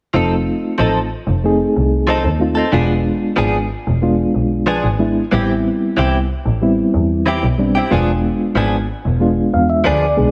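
A reedy electric piano, a clean electric guitar and a bowed double bass begin together at 0.1 seconds in this mournful, smoky blues, cut from a longer piece in a straight 4/4. The electric piano carries the accompaniment with a fast tremolo, its clean tone coming through its built-in speakers. The guitar, recorded direct and picked, plays compressed stabs bathed in lush chorus and slapback echo. Beneath them, one player bows the double bass with vibrato, giving a focused, warm sound with a smooth top. All three sit up front in a light studio reverb as the harmony moves from F7 to E7b9, Am7 and back to E7b9. The electric piano closes with a fill from 9.2 to 10.3 seconds.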